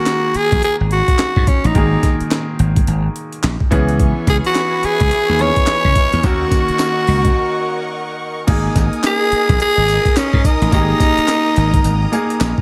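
A swung sixteenth-note groove at 107 BPM in 4/4 drives this slick, bouncy new jack swing excerpt in G# minor. The sampler-style drum kit sits up front, compressed and gritty, with a thumpy kick, a medium-tuned snare, hi-hat, handclaps, tambourine and crash cymbal. A punchy, bright slap bass plays alongside it, direct and amped. A brilliant grand piano comps intimately with audible action noise as the chords move from G#sus2 through C#m7 and D#m7. Over this a raspy, breathy tenor saxophone carries the jazz-style solo melody with a soft attack and a growling edge. A warm, bowed string section joins at 4.0 seconds with smooth, even sustained chords and vibrato, and after a break at 7.4 seconds the music returns to G#sus2 for a new section at 8.5 seconds, all within light reverb and studio ambience.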